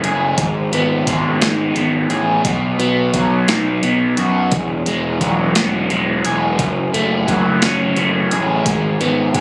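A straight 6/8 pulse at 58 BPM, counted in dotted quarters, drives this upbeat, jangly indie rock cut in B mixolydian, where a crunchy, double-tracked guitar riff with phaser sits up front beside a punchy fuzz bass and an overdriven, sampler-style 12-bit drum machine with a thumpy kick and medium-tuned snare, all three playing throughout over G#m, B, Eadd9 and F#madd9, captured on a phone in a club room with little reverb.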